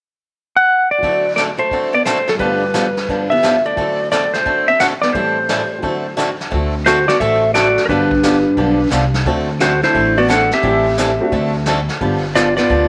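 Western swing country with a playful, swinging lilt, cut from a longer piece: a clean, up-front lap steel carries the melody from 0.6 seconds with slide and volume swells, over a bright, boxy picked acoustic guitar and a vintage brush kit that sounds distant and roomy with a punchy kick. A dark hollow-body archtop adds a second line in the background from 1.4 seconds, a woody upright piano with short sustain sits further back, and a growly pizzicato upright bass joins at 6.5 seconds. Moderate echo-chamber reverb gives the recording a small-room ambience over chords that move among D7, G7 and Am7.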